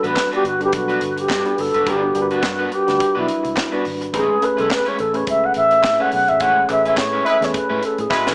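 A mellow alto flute carries the melody from the very start of this short disco cut, its pure, tongued tone shaded with expressive vibrato, while the band plays underneath at 106 BPM in A major with a gently swung sixteenth-note feel. A slightly broken-up electric guitar, twangy and picked, shimmers through a lush chorus, and a reedy electric piano pulses with fast tremolo, moving from Gmaj7 to Amaj9 at 4.1 seconds. Beneath them sit a dark, foam-muted fingered bass with a round, amped tone and a polished modern kit with a punchy kick and high-tuned snare, joined at 0.2 seconds by very quiet, crisp group handclaps. At 7.2 seconds a clear horn section adds loose, roomy stabs during a band accent, and a drum fill lands at 8.1 seconds as the passage cuts off. The mood is celebratory and danceable, set in a moderate large studio reverb with a small-speaker character.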